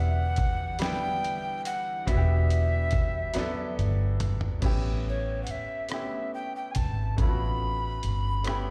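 An airy, slightly unsteady tenor recorder carries the sultry, yearning melody with vibrato, slapback echo and tape echo over a clear grand piano, a round, foam-muted electric bass, a gritty sampler-style soul drum kit that enters at 0.4 seconds and fills from 3.4 seconds, and a shimmering chorused pulse-width pad that holds chords in the background until 4.6 seconds, in this short slow six-eight R&B excerpt at 47 BPM moving from Em9 to A9, heard as a live gig through a venue's PA.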